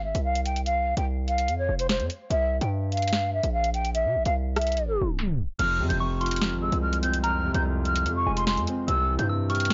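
Dry and gritty, this short excerpt of menacing, cold drill has a dull, rolled-off top end and a digital ambience. At 146 BPM in a half-time 4/4 feel, in F harmonic minor, a breathy, hollow flute with vibrato and lifted highs carries the melody through a low-pass filter. Underneath, a distorted, saturated 808-style bass sits heavy and up front with a noise layer. The electronic drill kit supplies a sharp snare, bright hi-hats, rim clicks and crash cymbal. A tape stop drags the track down from 4.8 seconds into a brief break, and at 5.6 seconds a dark, boxy concert grand piano enters on a filtered F minor chord. A soft, pure FM synth bell, colored by chorus and analog delay, adds a quiet second line from 6.0 seconds before the harmony moves to C.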